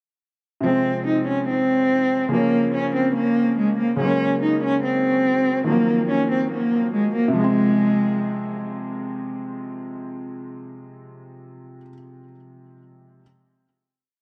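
This short, complete drill piece opens at 0.6 seconds with a cello and a felt-muted upright piano arriving together in a breakdown, setting a cold, menacing mood in F phrygian at 143 BPM with a half-time feel in 4/4. The bowed cello sits up front with a smooth, even tone and vibrato, carrying a looping melody that repeats like a sampled phrase, and each line trails off into dub echo. Beneath it, the upright piano holds closely voiced chords, its thin felt giving a soft, mellow, intimate sound with audible action noise, and it too repeats like a sampled loop through dub echo. The harmony moves from Fm through Bbm, Gbadd9 and Ebmadd9 before settling back on Fm for the final chord at 7.4 seconds. The cello falls away at 8.6 seconds while the piano lingers until 13.2 seconds, leaving an echo-heavy mix bathed in a moderate plate reverb with a dark, rolled-off top end.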